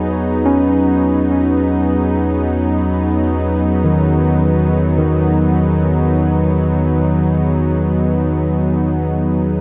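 A huge, moderate reverb opens this 9.6-second ambient excerpt into a vast, echoing space, peaceful and weightless in free time, tuned to A4 = 441 Hz and resting on a single G#m7/E chord. Up front, a detuned sawtooth analog pad with chorus and a slow attack holds smooth, mellow sustained chords, while a barky, clean tine electric piano heard through a combo amp spins delayed arpeggios. Beneath them, a round, deep analog bass of triangle and sine tones sustains a dark, filter-swept E2 throughout.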